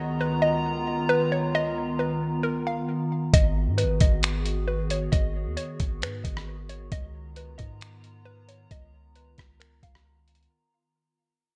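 A warbly, detuned tape-like pad and a hollow, bouncy square-wave pluck melody with chorus and delay open this melancholic, ethereal cloud-rap excerpt at 134 BPM in a half-time 4/4 feel, tuned to A4 = 438 Hz and moving between C#13 and G#m7, before a deep, boomy 808-style bass and an up-front, muffled, pitched-down sampler-style kit of thumpy kick, hi-hat, rim click and finger snaps enter at 3.3 seconds, all under a fade-out across the whole 10.5 seconds in bright, lightly reverberant 1980s-style digital production.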